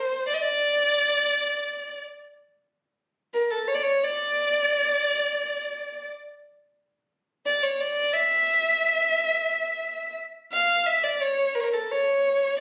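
This excerpt opens directly on a lone violin, bowed by one player in free time, carrying an Arabic melodic character that feels hypnotic and melancholic. The tone is dark and woody, played sul tasto with vibrato, and the instrument sits up front in the sound. Its line stays within a narrow compass from A4 to F5. After a brief opening phrase of about 2.3 seconds, the playing moves into a longer second passage that continues to the close at 12.6 seconds. A moderate studio reverb surrounds the violin, though the recording itself was captured on a phone in the room.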